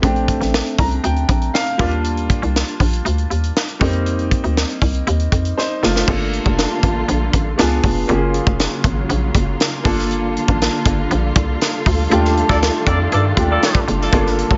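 Upbeat and urban, this polished 1980s jazz-funk pop clip rides on a tight, up-front acoustic funk kit with a high-tuned snare, a hollow, bouncy FM bass and a boxy baby grand piano bathed in lush chorus, with a piano fill near the start and a drum fill leading into the second section. Dark, woody studio strings enter at 6.1 seconds with sustained bowed chords, and a vintage horn section with light vibrato adds a brief second line at 12.5 seconds, treated with digital delay, during a band accent. Light reverb and a small room ambience keep the sound intimate.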